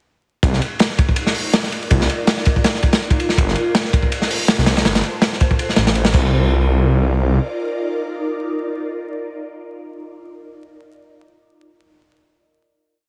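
Nostalgic and raw, this short drum and bass piece with a jungle edge opens straight into a drop at 0.4 seconds, where a crunchy breakbeat kit and a detuned saw bass arrive together. The drums are heavily chopped, gritty and up front, with dark cymbals across crash, ride and hi-hat, a medium-tuned snare and a tight kick, all with a rolled-off top and a slight swing on the sixteenths. Beneath them, the bass holds long, thick, menacing notes with a beating, detuned tone, following rootless Cm11 harmony that moves to Gm11 and back. An ethereal, airy pad fades in from 1.2 seconds, soft in the mix and shimmering with ensemble chorus, phaser and its own reverb. After the drums drop out at 6.2 seconds and the bass at 7.4, during the final hit, the pad lingers alone until 10.0 seconds. The whole recording sits in a small room ambience with a heavily compressed, radio-like sound and a bed of vinyl crackle.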